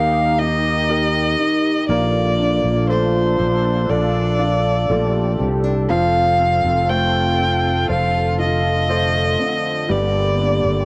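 A smooth, richly bowed solo violin carries the melody up front, its vibrato singing over a bright, direct fretless electric bass in this tender, emotional pop ballad at 60 BPM in Bb major, a short excerpt cut from a longer piece. Behind them, a dark, distant French horn section adds a second line, a clear baby grand piano and a fingerpicked nylon-string guitar supply accompaniment and arpeggios, and an evolving, detuned sawtooth pad with chorus holds sustained chords as the harmony moves from Eb through Bbmaj7 and F to Gm. The whole has the light reverb and small-room feel of a home recording, with cassette tape coloring every part except the bass.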